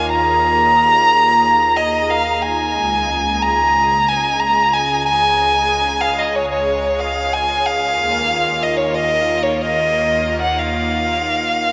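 This is an acoustic folk-pop ballad at 92 BPM in 4/4 with a straight feel, taken from a longer piece and carrying an intimate, melancholic mood. A single bowed violin carries the melody up front, its woody tone colored by vibrato as it moves between Db5 and Bb5 for the full 11.7 seconds. Beneath it, a phased analog pad holds sustained chords from Db2 to Bb4, its detuned sawtooth sound swirling and evolving through phaser and chorus with a soft attack. The harmony moves from Ebsus2 to Db at 2.7 seconds and returns to Ebsus2 at 7.9 seconds. A huge, wet reverb with a 7.8-second decay places the music in a vast, echoing space.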